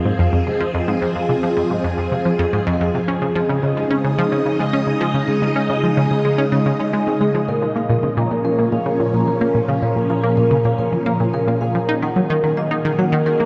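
A tight, driving sequenced synth riff with a bright, detuned sawtooth filter pluck sits up front, carried by chorus and delay through this ambient, sequencer-driven space music excerpt in Bb minor at 109 BPM. Above it, a swirling vintage string machine holds sustained chords through ensemble chorus and phaser, while a mellow soft-mallet vibraphone with its motor off rings out metallic arpeggios through a low-pass filter and delay. A very quiet pulsing gated texture adds a tempo-synced shimmer beneath the Fm, Dbsus2, Bbm and Ebm7 changes, all bathed in a huge, wet reverb within a dark, warm production that feels expansive and mysterious.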